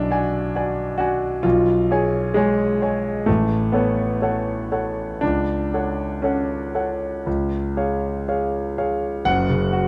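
A concert grand piano, smooth and vintage in tone with a deep bass and an up-front presence, carries this passionate, bittersweet romantic character piece in F# minor, played solo with rubato at about 58-68 BPM in 4/4. Cut from a longer work, the passage opens on G#m7b5/B and moves through C#7/B and F# minor chords before arriving on C# at 7.3 seconds and settling on a bare F#5 at 9.3 seconds. A wet recital hall reverb surrounds the instrument, and the production leans dark and warm.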